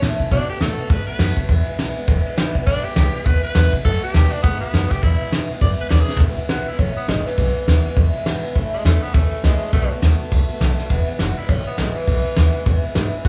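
A brush drum kit, upright bass and picked acoustic archtop guitar open this retro, upbeat rockabilly excerpt at 204 BPM in E major, with a swung eighth-note feel in 4/4. A raspy tenor saxophone enters at 0.3 seconds and takes a solo through the first section, its gritty, punchy vintage tone colored by vibrato. Beneath it, the pizzicato upright bass sounds woody and thumpy on gut strings, while the brushed kit sits up front with a fat snare and tight kick, working across ride cymbal and toms. The bright archtop guitar, with its old strings, sits low in the mix as it picks out the chords, moving from B7 to E and later through A. A drum fill at 6.1 seconds leads into the second section, and the whole band plays live in one room, with a small-room ambience and a moderate large studio reverb.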